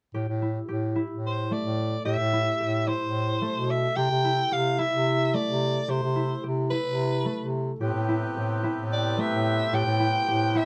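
Close, detailed microphones and light reverb frame this restless, pensive passage of contemporary chamber music in 7/8 at 219 BPM in A minor, cut from a longer piece, where a mellow, ringing, thumb-plucked concert harp plays arpeggios and a clear, soft-attacked bass clarinet holds the bass line from the start, a raspy, gritty soprano saxophone with vibrato carries the melody from 1.3 seconds, and a reedy, nasal hand-pumped harmonium adds breathing sustained chords from 7.8 seconds as the harmony moves from Am7 through Cmaj7 to Am9.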